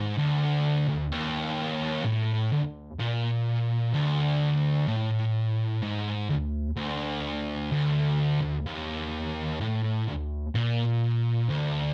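Ominous and hypnotic, this short metal excerpt moves at a slow 64 BPM in a straight 4/4, cut from a longer piece. A lone thick fuzz guitar, picked and double-tracked, sits up front with a warm, fuzzy distorted tone, playing low between D2 and Bb2 for the full 11.9 seconds. A light reverb gives the sound a touch of space.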